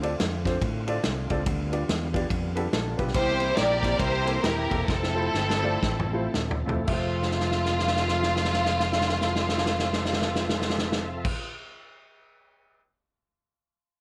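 A roomy, lightly reverberant excerpt of jubilant, hopeful uptempo gospel in F major, swinging in 4/4 between 107 and 143 BPM, where a dark, intimate grand piano with audible action noise, a very quiet lightly overdriven tonewheel organ on fast rotary, and a punchy amped fingered bass play alongside an up-front, distant-sounding acoustic drum kit, a clean mellow electric guitar briefly adds a second line at 2.6 seconds, and a lush bowed string section carries the melody with slapback echo from 3.1 seconds, as the tempo slows and drum fills run from 4.9 to 6.9 seconds and again from 7.2 seconds over chords moving from Dm7 to Fmaj7.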